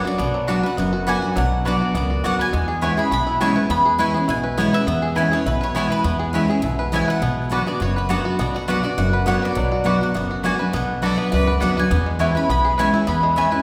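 Haunting and rustic, this brief bluegrass excerpt moving between Bm and E6 pairs a round, double-strung mandolin melody with a twangy, fingerpicked banjo line over a bright, full-bodied acoustic guitar up front, a growly, woody pizzicato upright bass and mellow mandolin stabs, while a clear, smooth fiddle slips in at 11.0 s, all bathed in the lush reverb of a church or concert hall.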